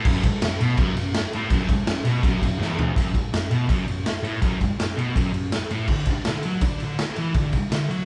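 Garage rock with a gritty, raw edge, this short cut from a longer piece sets a thick, dark, double-tracked fuzz guitar riff against a punchy, saturated drum kit with crash, ride, snare, toms and vintage sampler grit, both parts up front as a band playing live in one large studio room, with a drum fill at 2.6 seconds leading into a new section at 3.0 seconds.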